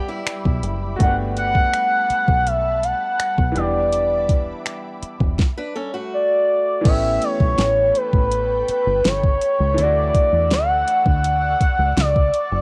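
Clear, intimate baby grand piano with audible action noise, an ethereal, warbling pad and brief, bright, boxy picked acoustic guitar arpeggios through analog delay open this smooth, tender contemporary R&B excerpt at 82 BPM. They are joined by a knocking, up-front drum kit with fat snare, metallic hats and finger snaps from 0.3 seconds, and by round, foam-muted dub bass, while a gliding, detuned portamento lead with vibrato carries the melody from 1.0 seconds over Em7, Gmaj9, A9 and Dmaj9 chords, all wrapped in a cassette-taped home recording with light reverb.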